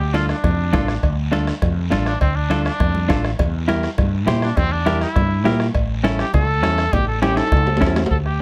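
Cumbia in D minor, this short, fiery clip from a longer piece drives along at 203 BPM in a straight 4/4. A clear, vintage-toned trumpet carries the melody as a solo across the whole passage, its light vibrato and scooped notes giving it a pop-style character. Up front, a round, dark fretless electric bass anchors the low end, while a bright, compressed electric guitar picks a clean accompaniment. Behind them sit the bombo struck with a soft beater, ringing congas played with hard hands, and metal-shelled cowbell and timbales, with a raspy guiro heard distantly as if in a large room. The harmony moves from Dm to Edim at 3.4 seconds and on to A at 5.8 seconds, and a drum fill arrives at 7.4 seconds just before the section closes. Light reverb and close, detailed miking keep the sound crisp and present.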